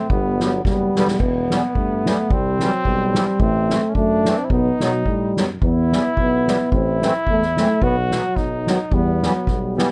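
A mellow, distant euphonium carries the melody over a dark, softly attacked trumpet second line from the start, joined at 0.1 seconds by a gently vibrato tuba bass and a soft-mallet drum kit with a punchy kick, while a reedy, shimmering musette accordion enters at 0.4 seconds in this jolly, festive, lightly reverberant alpine folk dance at 109 BPM in a lightly swung 2/4 and E minor, with a drum fill leading into a stretch that moves from Em through C, Am and B before resolving back to Em.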